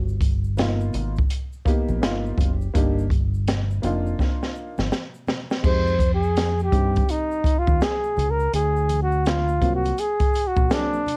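Mellow and cool, this jazz-hop excerpt in F dorian moves at 83 BPM with a swung sixteenth-note feel, opening on a dark, woody upright piano with audible action noise and cassette-tape wear, a round, punchy dub-style fingered electric bass with tube saturation, and an open jazz kit featuring a boomy kick, high-tuned snare and dark cymbals, while very quiet, bright egg shaker and congas sit in the background. A drum fill from 4.2 to 5.6 seconds leads into the second half, where a breathy, whispered flugelhorn with vibrato and scooped notes takes an intimate solo from 5.7 seconds over chords moving from Fm9 to D7b13. The home cassette recording sounds dry and close, with the drums, bass and flugelhorn up front.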